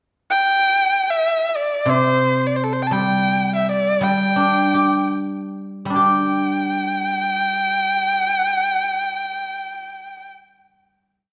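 Set in a recital hall with a wet, reverberant sound, this short, complete piece of Chinese traditional chamber music has a graceful, pastoral mood. A rich erhu enters at 0.3 seconds with a pickup into an expressive modal melody, bowed by a single player and colored with vibrato, portamento and ornaments. At 1.9 seconds the guzheng joins on its lower strings, its fingerpicked acoustic tone silvery and ringing beneath the melody. Both instruments sit up front, moving in 2/4 with a free, rubato feel somewhere between 65 and 99 BPM. From 3.1 seconds the pace gradually slows, easing the brief opening section into a final chord, where the guzheng rings on a little after the erhu has finished.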